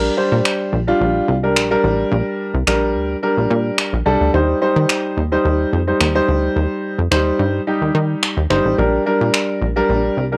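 Upbeat and euphoric, this short dance-pop fragment moves at 108 BPM in a straight 4/4, sitting in Bb major and drifting from Bb6 to Eb6 and back. A baby grand piano with an open, long-sustaining tone carries the accompaniment up front, while a plucky analog bass adds punchy, funky sawtooth and square-wave notes with a fast attack that decays. Layered electronic finger snaps enter at 0.5 seconds, up front as if re-recorded in a small room, and both the snaps and piano carry the character of cassette tape in a dry home recording.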